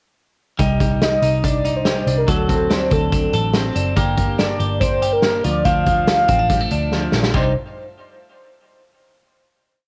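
Jangly indie pop in C dorian at 142 BPM, this short, bittersweet and wistful piece opens at 0.6 seconds with a bright, twangy twelve-string electric guitar rolling out fingerpicked arpeggios through cassette tape and tape echo, over a round, foam-muted picked bass line and a punchy vintage kit driving a brisk backbeat in a small, pumping room. A velvety, detuned synth lead with chorus and vibrato joins at 1.0 second to sing short song-like motifs over chords moving from Cmadd9 through D7, Gm and Dm. A drum fill at 6.9 seconds leads into a final Cmadd9 chord, all captured as a dry home recording on cassette.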